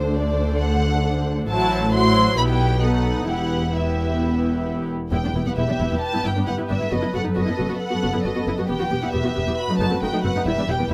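A dark-toned violin section carries the melody between C5 and C6, played sul tasto with light vibrato and a soft attack that gives the line a smooth, intimate top. This is a spirited, graceful classical-period movement for string orchestra, moving quickly at 135 BPM in a straight 4/4 in E minor, tuned slightly low at A4 = 437 Hz. A second violin section sits beneath the tune with a lush, woody voice, while a rich, floating viola section fills in the accompaniment. Cellos with vibrato and a double bass section with a clear, pure tone share the bass line, all the strings bowed over the board with soft attacks. The harmony turns around E minor and its B7 dominant, with a fresh phrase beginning at 5.1 s, and the close, detailed miking with little reverb keeps every section present across this 10.9-second passage cut from a longer piece.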